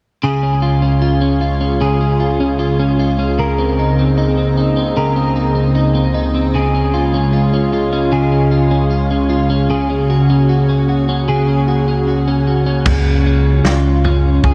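A straight 4/4 pulse at 76 BPM in Db major carries this floating, ethereal dream pop excerpt, where a warbling, detuned, nostalgic pad holds sustained chords through chorus and its own reverb while an up-front, dark, slightly broken-up electric guitar plays compressed, picked arpeggios through analog chorus and digital delay from 0.2 seconds, before a deep, full sub bass with octave and a punchy, small-room vintage drum kit with a rolled-off top (kick, snare, toms and crash) arrive at 12.9 seconds, set in a moderate shimmer reverb and a shadowy, warm production.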